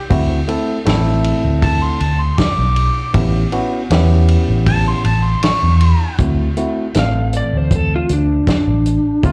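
Gritty and laid-back, this short excerpt of straight-eighth soul blues in D mixolydian moves at 79 BPM in 4/4, with a mellow, vintage harmonica taking a solo over D7 and A7 from the opening, its scooped notes and light vibrato roughened by overdrive and slapback echo. Beneath it a barky tine electric piano rings bright and clean through a combo amp, a foam-muted fingered electric bass sits round and up front, and a dry soul drum kit offers a fat snare, tight kick, hi-hat and ride with a rolled-off top. At 7.0 seconds a lightly driven lead guitar, dark and compressed, steps in with the melody, all heard as a live club gig through the venue's PA with club reverb.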